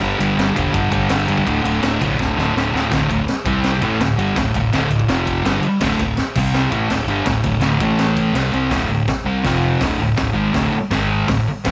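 A thick fuzz guitar dominates this swaggering, rowdy garage rock fragment, its dark, double-tracked tone sitting up front as it grinds out a riff over power chords that shift among G5, D5, C5, F5, A5 and a late G#5. The raw drum kit enters at 0.2 seconds, with a high-tuned snare and a boomy kick driving a straight 166 BPM in 4/4, and its saturated, gritty sound has a rolled-off top and the close feel of a small room. A drum fill around 2.2 seconds pushes the music into a longer middle passage, and the riff then keeps circling back to D5 through a final stretch starting at 8.7 seconds. Beneath it all, a growling fingered electric bass adds a bright, punchy, overdriven edge from further back in the mix. Light reverb leaves the trio sounding rough and close, as if caught mid-song.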